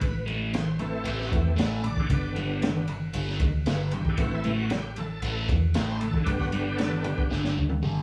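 Trippy and hypnotic, this psychedelic rock excerpt at 115 BPM in A dorian rides an Am–G vamp, with a bright, shouting tonewheel organ with key click leading through slow rotary speaker and chorus vibrato until 7.5 s, a thick, double-tracked fuzz guitar riff with phaser, a round, hollow-body fingered bass, and a gritty, saturated breakbeat kit with dark cymbals and a tight kick that closes with a drum fill at 7.3 s, all captured as a live band in one room with wet studio reverb.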